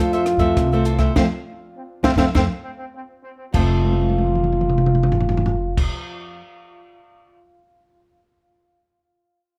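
This short extract of samba and choro has a festive, sunny mood, moving at 101 BPM in a straight 4/4 in F major and opening on an Fmaj7 chord. A breathy trombone carries the melody up front in an intimate jazz style, its whispered tone marked by a soft attack, scooped notes, light vibrato and a tape echo. A bright, crisply picked cavaquinho sits above a dark, fingerpicked nylon-string guitar with old strings, tucked in the background, while a growly, thumpy pizzicato upright bass with steel strings sits close to the listener. A compact cocktail drum kit in a small room adds a high-tuned snare, punchy kick, rim clicks, hi-hat, toms and crash cymbal with a rolled-off top, joining the band in an accent and playing a fill before a second section begins at 3.5 seconds, then adding another fill through most of that section. The other instruments drop out by 6.4 seconds, leaving the drums alone until 7.4 seconds, all within a light reverb.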